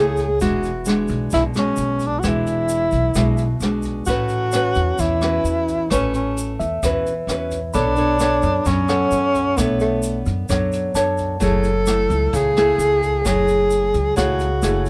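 A breathy tenor saxophone sits up front with an intimate, whispered subtone, carrying the melody between A3 and A4 with vibrato, scooped notes and a soft attack. This is a breezy, romantic bossa nova at 131 BPM in 4/4 with a straight feel, in A major, cut from a longer piece and moving through E9, A69, Bm9 and F#m9. A classical nylon-string guitar, thumb-plucked and up front, provides warm accompaniment. Beneath it, a woody pizzicato upright bass plays low, while a brushed drum kit with a boomy kick, hi-hat and rim click stays in the background with a rolled-off top, joined by a grainy tube shaker. A clean tine electric piano adds high accompaniment from 4.5 s until 11.6 s, and light reverb gives the whole group a gentle sense of space.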